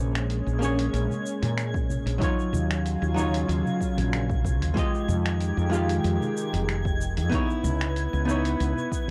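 A dry, gritty recording with the saturated haze of transformer and cassette tape opens this brief, relaxed sunset chillout fragment, lifted from a longer piece and carrying a gentle swing in 4/4. A woody fretless electric bass sits up front with a round, punchy, dark tone and subtle chorus, while a clean, picked archtop guitar, miked and amplified, offers dark hollow-body accompaniment through a low-pass filter and analog delay. Beneath them, a lush unison pad of detuned sawtooth and square waves holds thick, slow-attack chords treated with chorus and phaser, and a twinkling granular texture glimmers far in the background with an octave-up shimmer and its own reverb. Rhythm comes from a compressed, sampler-style soul kit of finger snaps, hi-hat and shaker, very quiet low-tuned congas played with soft hands, and a layered, punchy electronic kick that joins at 1.7 seconds. The harmony moves through Bbm9, Ebm9, Fm9 and Dbm9, keeping the mood unhurried and mellow.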